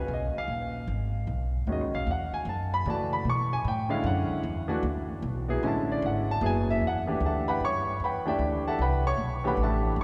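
A cathedral-like reverb with a 4.7-second tail bathes this short fragment of a longer piece, and it sounds as though it was captured in a church or concert hall. It is modal jazz in 3/4 at 152 BPM, with a swung eighth-note feel and a hypnotic, intense mood. A grand piano with a smooth, vintage, warm tone sits up front, providing accompaniment across a span from D3 to C#6. Beside it, an upright bass is plucked pizzicato on steel strings, its woody, thumpy sound also close and present, moving between F#1 and C#3. The harmony drifts through suspended chords, C#13sus4 and then E13sus4 at 2.1 seconds, before settling at 6.8 seconds onto Em11 as the music establishes E dorian.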